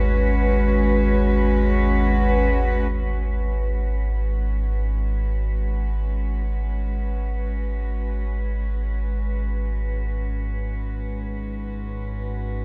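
A deep, rumbling, wave-folded drone sounds from the first moment alongside a bowed chamber cello section holding sustained chords, opening this dark, cavernous ambient fragment in free time. The drone carries its own built-in reverb and a subtle chorus, while the cello section's reedy, gut-string tone in period style fades in from 2.9 seconds to the end at 12.6 seconds. A moderate cathedral reverb surrounds the recording, giving its dark, warm production a cavernous sense of space.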